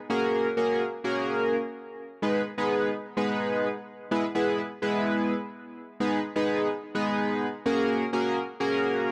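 A straight 4/4 pulse at 127 BPM drives this bittersweet yet energetic pop fragment in G# minor, cut from a longer piece and played by a solo chorused polysynth from 0.1 to 9.1 seconds. Its retro, glossy tone blends pulse-width-modulated pulse, sawtooth and triangle waves over a sub octave, with a filter sweep, fast attack and sustained chords sitting bright and up front between G#3 and B4, treated with analog delay. The progression moves through F#add9, G#m and E before returning to G#m and F#add9, captured in a dry, gritty hardware recording with light reverb.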